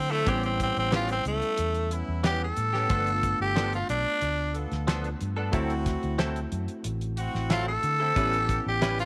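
Over a straight-eighth 4/4 groove, this laid-back, soulful blues fragment is carried by a damped 70s drum kit with a fat snare and tight kick, and a dark, foam-muted fingered electric bass with tube saturation sitting up front. A raspy, growling tenor saxophone solos throughout with light vibrato, over chords moving from A9 to G9 and D9. Behind it, a clean, twangy electric guitar adds chorused stabs, a bell-like tine electric piano supplies accompaniment, and a brilliant, loose horn section holds sustained chords in a small, lightly reverberant room.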